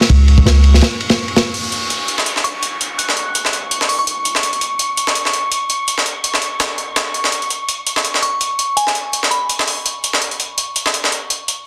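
A raw, atmospheric drum and bass and jungle excerpt at 166 BPM, crackling with vinyl noise and a dense, heavily limited sheen, opens on a crunchy, saturated breakbeat kit of tight kick, medium-tuned snare and dark ride over a deep, mellow 808-style bass. A pitched-up, compressed sampler-style break of hi-hats and high-tuned snare takes over at 1.5 seconds alongside an electronic downlifter, while a breathy, wind-like tuned noise texture lingers in the background and a glassy, crystalline FM bell, warbling with chorus, phaser, 12-bit grit and dub echo, drifts in at 2.4 and 8.2 seconds.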